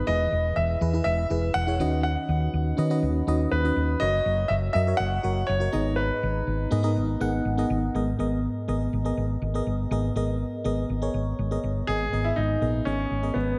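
This 1980s-style pop excerpt feels glossy and nostalgic, drifting through a dreamy mix soaked in plate reverb. A clear, intimate concert grand piano with long sustain and analog delay carries the melody, drops out at 6.9 seconds and returns at 11.9 seconds. Beneath it, a mellow FM electric piano with a phaser and a noise layer holds the accompaniment, while a round, punchy hollow-body electric bass sits up front with a dark, amped tone.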